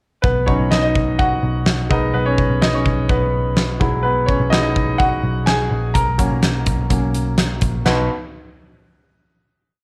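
Light reverb and a small-room ambience frame this short, uplifting piano-driven pop piece, where a bright, brilliant concert grand sits up front with syncopated, closely voiced chords, deep bass and short sustain, taking the lead through a hopeful verse over a steady B pedal. A dark, foam-muted, round electric bass holds a sustained line underneath, while a huge acoustic arena kit with a fat snare and punchy kick drives a straight pop backbeat with crash and hi-hat. The piece closes on a final chord at 7.9 seconds.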